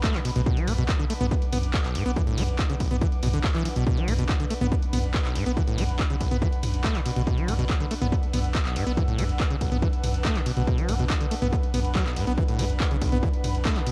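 A squelchy, resonant sawtooth acid bass sits up front in this cut from a longer piece of driving peak-time techno at 141 BPM in B minor, its brilliant, filter-swept riff spanning B1 to B3 through cassette tape grit, analog delay and sidechain pumping, all over a held Bm chord. Beneath it, a thick saturated sub bass holds B1 with tube saturation and a low-pass filter, while an overdriven, punchy electronic kick and an analog drum machine of handclaps, hi-hat, ride cymbal and toms, both re-recorded in a large room, drive the straight 4/4 pulse. An airy, breathy, detuned pad with a layer of hiss and chorus floats softly from D4 to E6, and the whole intense, industrial track carries a light reverb and the character of a home cassette recording.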